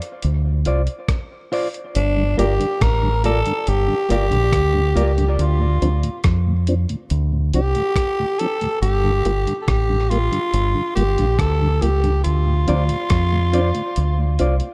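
Awash in digital ambience and echo, this dub reggae excerpt from a longer piece feels spacious and hypnotic in a straight four. A compressed, sampler-style drum kit lays down hi-hat, rim clicks and a thumpy kick with a dusty, gritty character, and the kick drops away in the closing moments. A deep, round fingered electric bass sits up front, direct and amped, carrying the low end under a slow sway between minor seventh chords. A clean, picked electric guitar bathed in spring reverb and tape echo adds thin, filtered accompaniment before falling silent at 5.1 seconds and returning at 12.7 seconds. From 2.0 seconds a raspy, growling tenor saxophone takes the solo lead with light vibrato and its own tape echo, while a mellow, dark tonewheel organ fills in beneath it through chorus vibrato and a slow rotary speaker.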